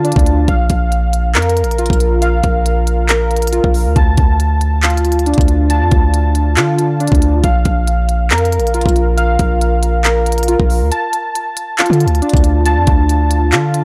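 Hip hop in a trap style, this brooding, melancholic cut from a longer piece moves at 138 BPM in 4/4 with a half-time feel, set in D minor. Warbly lo-fi synth keys carry the arpeggios from D4 to A5, their detuned pulse and sawtooth tones softened by chorus, a low-pass filter and tape echo into a mellow, nostalgic haze. Beneath them a hard-hitting 808-style bass spans Bb1 to D3, punchy and heavy with a sine body, a noise layer and a fast attack that decays. The trap drum kit sits up front with a knocking kick, crisp hi-hats and handclaps, and a brief break arrives at 10.9 seconds. The harmony alternates between Bb5 and Dm, and the whole is framed by digital ambience in a dry, gritty hardware recording with transformer saturation.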